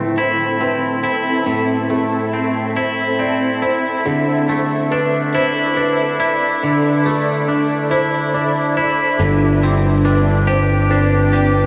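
Soaked in a huge, dreamy reverb with a trace of small-room ambience, this short post-rock passage, cut from a longer piece, feels cathartic and cinematic. It moves slowly in 6/8 at 47 BPM counted in dotted quarters, with a straight feel and tuning set to A4 = 439 Hz. A shimmering, ethereal pad with an octave-up sheen and a slow attack sustains the chords from Am to Dsus2, while a twangy, clean electric guitar sits up front, picking compressed arpeggios through subtle chorus and analog delay. Farther back, a felt-muted upright piano adds soft, boxy, intimate arpeggios, blurred by lush chorus and delay. At 9.2 s, as the harmony turns to Gsus4, a growly, punchy picked electric bass arrives on a low G and a gritty, saturated acoustic hi-hat ticks faintly in a pumping stone-room sound.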